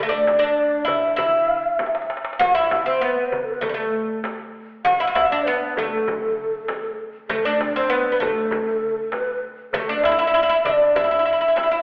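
A straight 4/4 pulse runs through this brief, melancholic and soulful passage from an Arabic maqam ensemble, cut from a longer piece. The fretless oud carries the melody up front, its plectrum-plucked double strings sounding bright, woody and deep. A breathy low ney plays a second line above it, end-blown cane with a soft attack and warm vibrato. Underneath, a close frame drum played with soft hands adds warmth, while a small metal-shell darbuka sits crisp and dry in the background, with a drum fill between 1.8 and 2.4 seconds. The whole ensemble is heard from further back in a recital hall with a lingering reverb, and a narrow, telephone-like tone colours the sound.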